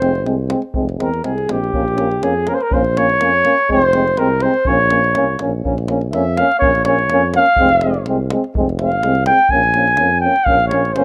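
Virtuosic and fiery, this Balkan brass band passage in 2/4 with a lightly swung feel keeps speeding up as a flugelhorn takes the lead, sitting up front yet distant and roomy, with a slapback echo on its line. Beneath it, a trombone with light vibrato and a euphonium in the background supply the accompaniment, a close-miked, mellow tuba carries the bass, and a deep, dry davul provides percussion, all of them playing throughout the 11 seconds. The small room and rough home-demo mix give this fragment of a longer piece a raw sound, even with the classical-style playing.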